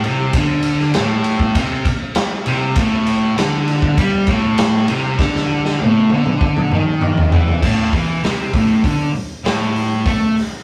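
Garage rock at 99 BPM in a straight 4/4, rowdy and swaggering, with a distorted, double-tracked fuzz guitar riff sitting up front between A2 and A3 while a raw acoustic kit of kick, snare, toms, hi-hat, crash and ride plays beside it, its punchy kick and dark, rolled-off top ringing in a bright stone room. A drum fill runs from 5.2 to 7.6 seconds, leading into a new section. The rough rehearsal-room sound carries tube saturation and a moderate studio reverb, and this short cut from a longer piece ends shortly after 10 seconds.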